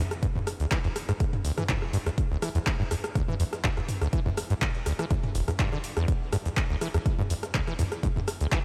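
Raw and hypnotic, this acid house excerpt in E minor at 123 BPM rides a squelchy, resonant sawtooth bass riff spanning E1 to E3, bright and up front with tube saturation, subtle chorus, cassette tape color and a diffuse ambient delay, over an overdriven, punchy electronic kick and an overdriven analog drum machine with cabasa, handclaps, hi-hat, rim click and toms, while a gritty, very quiet sampler-style kit adds hi-hat and a medium-tuned snare under a light reverb.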